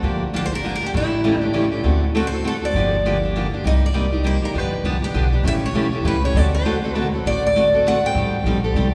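A bright, picked steel-string acoustic guitar with fresh strings plays the accompaniment alongside a woody, thumpy, dark pizzicato upright bass on gut strings to open this fiery, swinging jazz manouche fragment in three, and at 0.4 seconds a second, up-front picked acoustic guitar enters with the melody, its finger squeak audible, as the whole performance rings out in a long, wet cathedral reverb.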